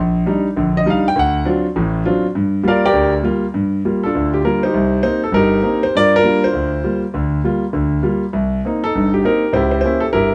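A live-room sound with moderate studio reverb frames this cool, moody swing jazz fragment in G minor at 201 BPM, where an up-front concert grand piano with a warm, smooth, vintage tone and deep bass takes a solo across the full 10.3 seconds, moving from Ebmaj7 and D7#9 to Gm7 before a second section from 3.5 seconds that circles Cm7 and Gm7 and ends on C#dim7 as the passage is cut from a longer piece.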